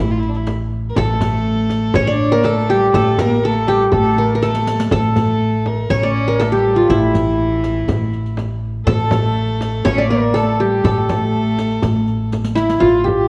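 A straight 4/4 pulse at 122 BPM drives this hypnotic, longing Arabic maqam ensemble piece in A maqam hijaz, tuned slightly high to A4 = 441 Hz and cut from a longer work. Up front, the plectrum-plucked qanun carries the melody with a bright-edged triple-string ring, while the pizzicato upright bass holds a woody, thumpy A1 beneath it. Two bowed second lines fill the middle: a reedy, gut-string cello with light vibrato in a period style, and a floating sul tasto violin with a soft attack and smooth top. Frame drum and riq, with its dark jingles, sit close and dry in the background, and drum fills mark 4.4 s and 12.3 s, the moment the cello drops out. A moderate recital hall reverb surrounds the ensemble, and the sound carries the worn, warbling pitch drift of old cassette tape.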